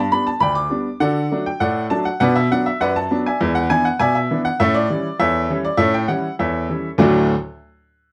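A clear, woody upright piano plays solo and up front, carrying a lively, cheerful ragtime in D major at 100 BPM in a straight 2/4, tuned slightly sharp to A4 = 441 Hz and spanning D2 to D6. Its progression moves from G through D, B minor, E7 and A7 before settling on D at 7.0 seconds, just as a new section begins, and the piano stops at 7.3 seconds in this short cut from a longer piece. Light reverb and a dark production frame the instrument's natural tone.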